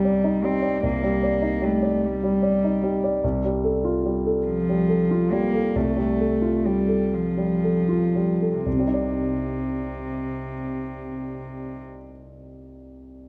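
Neoclassical piano and strings in C dorian, fragile and longing, drifting in rubato 6/8 at 38-51 BPM and slowing from 2.0 to 8.7 seconds, where a warm, natural grand piano carries the accompaniment up front while a single bowed cello, rich and floating with a pure sul tasto tone and soft attack, sings a second line until 11.8 seconds over Cmadd9 and Fadd9/C harmonies in a moderate scoring-stage reverb, the piano closing the fragment alone at 13.3 seconds.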